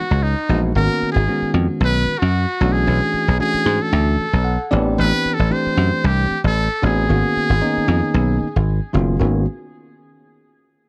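Intense and slick, this electric jazz fusion passage, cut from a longer piece, rides a 4/4 groove with a light swing on the sixteenths. A trumpet with a metal mute carries the solo melody up front, its buzzy, breathy tone dressed in light vibrato, scooped notes and a touch of tape echo, and it drops out at 8.6 seconds. Underneath, a dry thumbed slap bass sits prominently in the mix, punchy and foam-muted, driving the low end through a chain of minor eleventh chords. A bell-like tine electric piano supplies clean accompaniment across a broad register and slips in a short fill at 4.2 seconds. The whole take has the close, intimate sound of a 1970s-style studio session in a small room.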